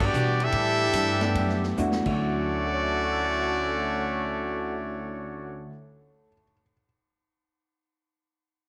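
A moderate echo-chamber reverb and studio ambience surround this joyful, energetic big band swing excerpt in D major, which slows from around 154 to 134 BPM over its first 2.2 seconds as the drum kit, with its punchy kick and natural big-room sound, plays a fill before dropping out at 2.1 seconds. Up front, the bright trumpet section carries the smooth-topped melody over a tight trombone second line with light vibrato, while a woody, growly pizzicato upright bass and a very quiet, clean picked hollow-body electric guitar fill in beneath. The chords move from Em9 through A7sus4 to a Dmaj7 landing at 2.0 seconds, and a dark, worn baby grand piano with long sustain rings on until 6.8 seconds.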